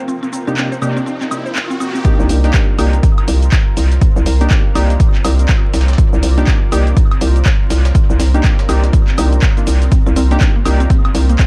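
Riding a swung 16th-note groove at 122 BPM in 4/4, this moody, hypnotic deep house cut in C minor sits on a single Cm9 chord, with a punchy analog drum machine of cabasa, handclaps, hi-hat and woodblock under dub echo from 0.1 seconds. It opens with a background riser and a filter sweep, a woody, nasal mallet-like synth pluck running arpeggios through chorus, dub echo and sidechain pumping, and a blurred, granular cloud pad that breathes through its own reverb and pumping in the background. The drop lands at 2.0 seconds, bringing in an up-front, tape-warm electronic kick, a very quiet, gritty, pitched-up breakbeat kit of hi-hat and snare tucked underneath, and, just after, a hollow, bouncy FM bass knocking on C2. Round analog keys built from detuned pulse and sawtooth waves play stabs with a filter sweep, chorus, tape echo and sidechain pumping from 0.5 to 10.8 seconds, while the pluck returns near the close. 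The whole mix is echo-heavy and dusted with vinyl crackle, and the passage is cut from a longer piece.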